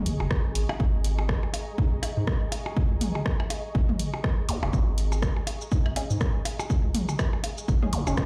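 Heard through a big sound system in a bare room with a large studio reverb, this clinical, sparse minimal techno excerpt at 122 BPM swings its 16ths over a G#sus4 chord, as an up-front, tape-warm analog kick thumps along and a deep, saturated sub bass pumps beneath an ethereal, airy pad with ensemble chorus and a flickering, grainy background texture, while a punchy drum machine supplies hi-hat, rim click and shaker, delayed electronic blips and toms dot the groove, brief electronic zaps flash at 4.5 and 7.9 seconds, and a muted, detuned dub chord stab with phaser and delay arrives at 6.0 seconds.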